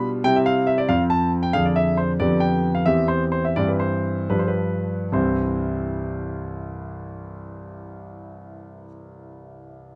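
Elegant and cheerful, this classical-period piano sonatina fragment in 6/8 features a clear concert grand played solo, its deep bass and natural, up-front tone captured by close, detailed microphones in light reverb, as the music slows from 1.5 to 5.1 seconds, coming to rest on a C chord before a brief second section.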